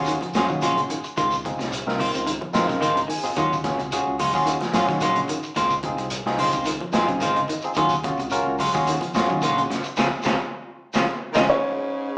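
This excerpt from a longer afrobeat piece sounds like a band playing live in one room, heard through a small speaker and bathed in a wet studio reverb. Over a lightly swung groove that feels intense and defiant, a bright, barky tine electric piano sits up front with accompanying chords, adding short fills around 2.5 and 6.7 seconds, while a dark, clean electric guitar plays stabs. A twangy guitar at the edge of break-up picks arpeggios in the background. Underneath, a fingered electric bass holds the low end, and a crunchy, saturated breakbeat kit with a punchy kick drives the beat and drops a fill near 3.0 seconds. Grainy shekere and very quiet, hard-handed congas fill out the percussion. The harmony moves between Ebm11 and Dbmaj9. During a band accent from 10.0 seconds, a soft, felt-muted upright piano melody enters near 11.3 seconds, joined briefly by a raspy, breathy tenor saxophone and a forceful, clear baritone saxophone on a second line.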